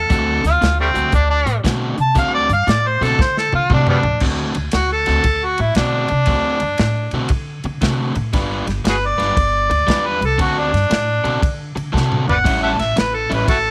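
Electric blues shuffle at 117 BPM in D mixolydian, rollicking and soulful, with a mellow, overdriven harmonica out front playing a jazz-style solo full of tongue slaps and scooped notes across the whole 13.7 seconds of this cut from a longer piece. Beneath it, a woody, thumpy upright bass with gut strings and a picked, overdriven electric guitar riff carry the changes from D7 to G7, back to D7 and on to A7. An airy, polished acoustic kit with a punchy kick adds drum fills at 3.2 and 11.9 seconds, all set in a small room.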